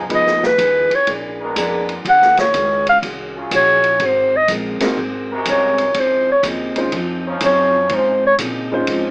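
A breathy, mellow clarinet solo floats up front over a clear, roomy trombone section holding sustained chords, with woody pizzicato upright bass, a bright picked steel-string acoustic guitar, a swinging drum kit with dark cymbals and punchy kick, and a warm grand piano that sounds briefly at the start and returns at 4.8 seconds, all in a brassy 123 BPM big band swing excerpt in Db major moving from Fm7b5 to Dbmaj9, colored by club reverb and an AM radio sound.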